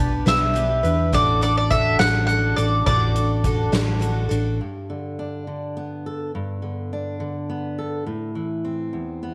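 Nostalgic and uplifting, this indie folk excerpt in G major moves at 69 BPM in 6/8, opening with a woody, up-front mandolin melody over a shimmering, octave-doubled twelve-string acoustic guitar and a round, punchy hollow-body electric bass, joined at 0.3 s by a soft-mallet drum kit with a boomy kick and natural hall tone, before a full-bodied fingerpicked jumbo steel-string acoustic guitar with audible finger squeak takes over at 4.6 s, set in a light studio reverb.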